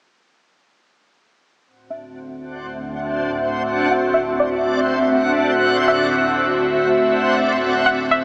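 An airy, detuned pad carries sustained chords up front from 2.3 s through phaser and ensemble chorus, while a reversed, granular texture enters at 2.5 s and a twangy, string-like resonator pluck plays a delayed melody in the background from 1.9 s, the whole sitting in a huge ambient reverb with a small-speaker character and a filter sweep over a D7 chord in this floating, blissful half-time hip hop fragment at 121 BPM.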